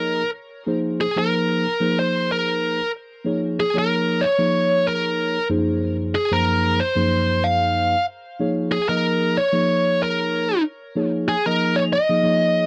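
A bluesy, distorted lead guitar, picked and up front with tape echo, carries the melody over a mellow, clean tine electric piano with phaser that plays the chords from the very start of this slick, funky jazz passage in Eb dorian, cut from a longer piece. At 93 BPM in 4/4 with a light swing on the sixteenths, the harmony moves through suspended and ninth chords and settles on Eb9sus4 at 8.4 seconds. The sound is dry and close, like a 1970s studio, with light reverb and tuning set slightly sharp at A4 = 441 Hz.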